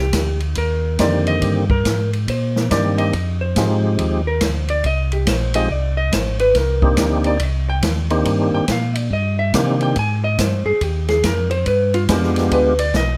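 Swinging in 4/4 at 141 BPM, this smoky, bluesy soul jazz organ trio in C minor sets a clean, picked hollow-body electric guitar soloing throughout against a round, mellow tonewheel organ bass with key click and slow rotary speaker, a natural small-room acoustic drum kit with a boomy kick and dusky cymbals, and, from 1.0 s, a full, lightly overdriven, percussive tonewheel organ melody with chorus vibrato and slow rotary speaker, moving from Cm7 through Ab5 to G7b9 in light reverb.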